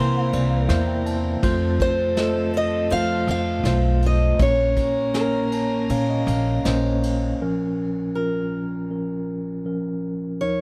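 Heard in a studio room, this short cut from a longer acoustic folk-pop ballad moves at a slow 80 BPM in a straight 4/4, its mood melancholic and heartbroken. A picked acoustic archtop guitar with old strings and a boxy, woody tone carries the melody, touched by a slapback echo, while a clean tine electric piano sits up front as accompaniment through its built-in speakers. Beneath them, a pizzicato upright bass with steel strings sounds woody, warm and up front, and a distant, roomy brush drum kit adds a punchy kick, a medium-tuned snare and ride cymbal from 0.3 s. A chamber string section holds soft-attack, floating bowed chords, and an electric guitar through a small old amp plays bright, twangy, slightly broken-up arpeggios with harmonic tremolo until 5.9 s. The harmony moves from C7 through F to Bbmadd9, and at 7.4 s the strings, bass and drums have dropped away, leaving the archtop guitar and electric piano alone on a Bb minor chord.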